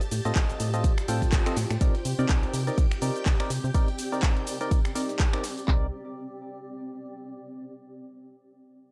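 Piano house at 124 BPM in C dorian with a 16th-note swing, soulful and energetic, opens on a drop: a punchy, up-front house kit kick and handclaps lead a layered drum bed of analog drum-machine snaps, claps, hi-hat and shaker with a large-room character, a gritty, pitched-up breakbeat sampler kit with a high-tuned snare, and a very quiet tambourine. A round, dark FM bass and a hollow, percussive organ stab with chorus, phaser and delay pump against the kick, while shimmering vintage string-machine violins sit in the background with ensemble chorus. A cloudy, blurred granular pad with its own reverb holds as the harmony moves from F7/A to Cm9 at 1.8 seconds, then sustains alone to 7.6 seconds, all within a dark, lightly reverberant production.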